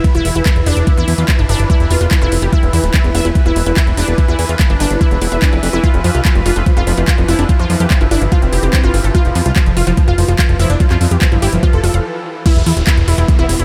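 An overdriven, knocking electronic kick drives this hypnotic psychedelic trance excerpt at 145 BPM in E phrygian, joined by a garage drum kit with metallic hats, handclaps and crash cymbal, a fat, detuned analog bass, a bright, wave-folded unison pluck riff with cassette-tape colour and delay, and a bubbling, resonant stepped-filter texture holding sustained chords, while an airy supersaw stab with phaser and 12-bit sampler grit carries the melody from 5.8 to 12.0 s before a brief stop, and the drop at 12.5 s brings a background downlifter and, near its end, a fleeting formant-sweep wobble bass.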